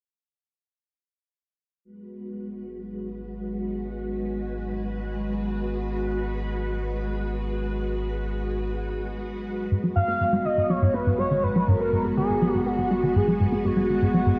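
A deep, round sub bass fades in at 1.8 seconds beneath a lush, vintage string machine holding a filter-swept G#m7 chord, setting a cosmic, hypnotic ambient space-music mood in a cut from a longer piece; at 9.7 seconds a punchy, funky analog bass riff with delay and its own filter sweep joins in, and at 10.0 seconds a shimmering, nasal pulse-width lead with vibrato and portamento carries the melody, all bathed in an echo-heavy mix with a long plate reverb.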